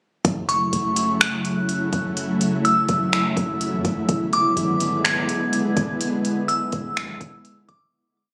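A hazy, ethereal mood hangs over this short atmospheric cloud-rap piece, which moves with a half-time feel in 4/4. A smooth R&B drum kit of finger snaps, hi-hat and soft kick sits up front with a sparse, tape-warm beat, re-recorded in a large room, while a deep, sine-toned 808-style bass stays in the background with long sub-bass notes that follow the kick and slide in pitch. From 0.5 seconds an airy, detuned pad holds sustained chords up front, its vintage sawtooth and triangle tones warbling through ensemble chorus, built-in reverb and sidechain pumping. Above it, a glassy FM bell repeats a sparse, crystalline melody like a sampled loop, coloured by chorus, phaser and tape echo. The harmony moves from F#m7 to E7 at 4.1 seconds, and the whole piece, heard as if captured on a phone in a club-like room with light reverb and compression, fades out from 6.0 seconds to its close at 7.9 seconds.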